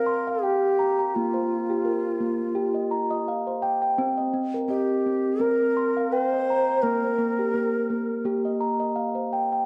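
At a steady 84 BPM in 4/4 with a light sixteenth-note swing, a steel tongue drum struck with firm rubber mallets spins round, pure, ringing arpeggios with a vintage, band-limited character, while a low Native American-style wooden flute carries a gentle, hypnotic melody, airy and woody with vibrato, tongued chiff and a tape echo trailing its phrases. Both parts sit up front over a wet recital hall reverb and small room ambience in a dark, warm production, moving through C5, Bb5 and C minor harmony in this meditative world passage cut from a longer piece. The flute falls away at 8.2 seconds, leaving the tongue drum to ring on until 9.7 seconds.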